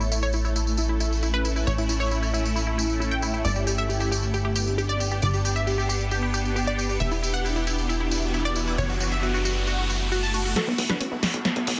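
A straight 4/4 pulse at 135 BPM drives this euphoric, emotional uplifting trance excerpt in B minor, with a punchy, funky analog bass in its low register and a jingly, close and dry tambourine running from the start until 10.5 seconds. Over them a bright, detuned sawtooth unison pluck carries the lead melody through a phaser and digital delay, while a shimmering, ethereal pad holds sustained chords with an octave-up granular sheen, chorus and its own reverb. The harmony moves from A to G, then Em7 and F#m7, before landing on Bm7 at 10.6 seconds. An electronic riser enters at 7.9 seconds to build toward that point, where a punchy analog drum machine arrives up front with a fill of filtered snare and hi-hats, a filter sweep opens the lead pluck, and two very quiet full-bodied plucks join, one adding a second line and the other arpeggios. The mix sits in a light digital ambience under a dense, heavily limited modern master.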